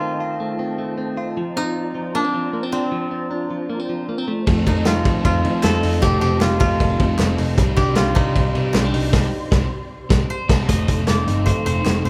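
A straight 4/4 pulse at 154 BPM carries this breezy, nostalgic jangly indie pop, where a woody, fingerpicked koto melody rides over bright, compressed clean guitar arpeggios and a hollow, flute-like pad with ensemble chorus, until at 4.5 seconds a punchy, up-front loose indie drum kit, a round, foam-muted vintage electric bass and a crunchy overdriven guitar in the background join, followed at 4.9 seconds by very quiet, distant group handclaps, with a band accent at 9.1 seconds before the music moves into a new section at 10.7 seconds, the band playing live in one large studio room.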